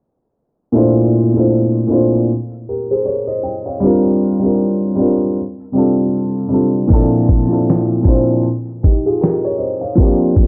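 A dark, woody upright piano opens this nostalgic, mellow lo-fi hip hop excerpt at 0.7 s, its low-passed, plate-reverbed chords moving through Bbmaj9#11, C7sus4 and F6/C, with a filter sweep running throughout and a swung 16th-note feel. At 6.9 s a dusty, sampler-style soul drum kit joins up front, its thumpy kick, medium-tuned snare and hi-hat carrying a compressed, gritty small-room character. The dry recording has cassette tape grain and transformer saturation in a moderate studio ambience.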